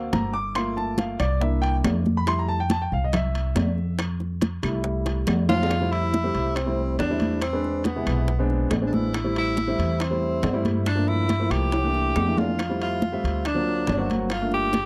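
Afro-Cuban jazz at 140 BPM in F major with a sunny, sophisticated mood, where an intimate grand piano with audible action noise and long sustain takes the spotlight for the opening seconds over a thumpy, gut-strung pizzicato upright bass, round hard-hand bongos, thick-skinned background congas, ringing metal-shell timbales and woody claves, before a clear, roomy tenor saxophone with light vibrato enters at 5.5 s to carry the melody through chords like Fmaj9, E7b13 and D7alt, all captured in a dry, close 1970s-style studio sound with lossy compression artefacts.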